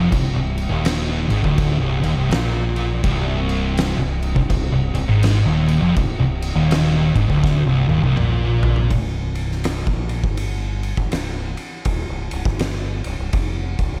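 A swung 4/4 groove drags along in this sludgy, brooding stoner and doom metal excerpt, as two distorted fuzz guitars grind out a low riff from the background over a growly, punchy overdriven fingered bass. Up front, an oversized low-tuned acoustic kit with a boomy kick, fat snare and dark crash and ride cymbals rings in a bright stone room, and it throws in a fill at 7.4 seconds. At 8.9 seconds the guitars drop out and the harmony moves from a minor chord to a bare power chord, leaving bass and drums to carry on dry and close.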